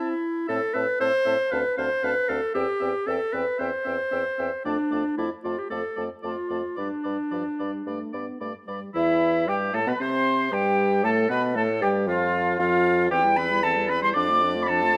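A 4/4 pulse at 114 BPM is shaped with a flexible rubato feel in this quick, cheerful and graceful classical-period movement for wind quintet in C major, tuned to A4 = 445 Hz and cut from a longer piece. The concert flute carries the melody with an airy, straight tone and soft attack, set somewhat distant, while the oboe adds a clear second line with light vibrato and a roomy, far-off placement. The clarinet accompaniment sits close-miked and up front, the French horn fills in below with a dark, smooth-topped sound, and the bassoon enters on the bass at 0.5 s with a mellow tone and a touch of vibrato. The harmony starts from A minor and D minor colors before reaching G; a new section begins at 9.0 s, and the chords briefly fall away at 12.1 s before returning. A moderate recital hall reverb and close, detailed microphones give the ensemble both presence and space.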